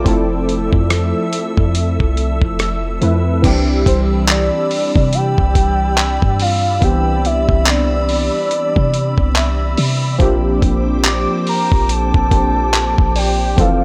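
A dry recording opens this excerpt of smooth, dreamy contemporary R&B, moving at 71 BPM in 4/4 with a swung sixteenth-note feel in C major. Up-front analog keys with a round, detuned sawtooth tone and a filter sweep carry the accompaniment. A deep, boomy 808-style bass sits underneath, while a dusty, compressed sampler-style drum kit brings a thumpy kick, gritty handclaps, hi-hat, rim click and crash. High above, a glassy FM pad holds ethereal sustained chords with ensemble chorus, built-in reverb and sidechain pumping, moving from Fmaj7 to Cmaj9 at 3.4 seconds and to Bb69 at 10.2 seconds. At 3.9 seconds a soft, full octave-layered synth lead takes the melody, its dark triangle and sawtooth blend carrying vibrato, tremolo and tape echo, joined by a faint, inharmonic chime ringing in the background through chorus and tape echo.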